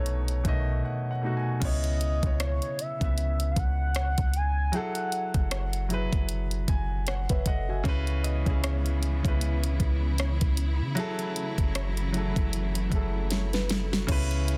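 A dense, heavily limited mix with small-room ambience carries this sensual, moody contemporary R&B fragment, where a gliding sawtooth portamento lead with chorus and tape echo sings only until 5.5 seconds over an intimate grand piano with audible action noise, a round, deep 808-style bass and a knocking electronic drum kit with a fat snare. Faint thumb-plucked nylon-string guitar arpeggios first appear at 7.1 seconds, lush bowed strings arrive at 7.9 seconds, and a very quiet felt-muted upright piano follows soon after.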